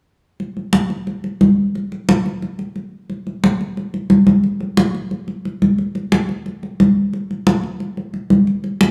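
Thick-skinned, medium-tuned acoustic congas with a vintage, band-limited tone sit up front from 0.4 to 8.9 seconds in this lively, danceable jazz fragment at a brisk 178 BPM in straight 4/4, recorded as a live band in one room and bathed in a lush, large studio reverb.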